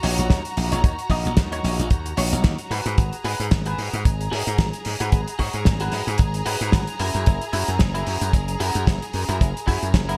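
A swung 112 BPM groove from a tight, up-front kick that enters at 0.3 s and a damped 70s kit of hi-hat and medium-tuned snare drives this sunny, feel-good nu-disco excerpt, with a glassy, punchy slap bass, a twangy, scooped clean guitar riff dressed in chorus, low-pass filter and delay, and a lush bowed string section holding sidechain-pumped chords over D#m7, G#m7 and F#7, all in a bright 1980s-style digital production with light small-room reverb.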